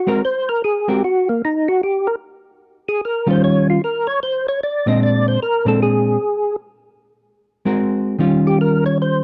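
Swinging and bluesy, this short jazz excerpt cut from a longer piece moves in a 4/4 swing. A percussive tonewheel organ carries the melody and solos throughout, its fat, clean tone marked by third harmonic percussion, audible key click, chorus vibrato and a slow rotary speaker. A dark, clean hollow-body electric guitar, fingered and sitting up front, supplies the accompaniment from 0.1 seconds onward. The harmony moves through dominant ninth chords, shifting from Ab9 to Eb9, then Bb9, and back through Ab9 to Eb9 by 8.2 seconds. The sound is dry and close, with little reverb, in the manner of a 1970s studio recording.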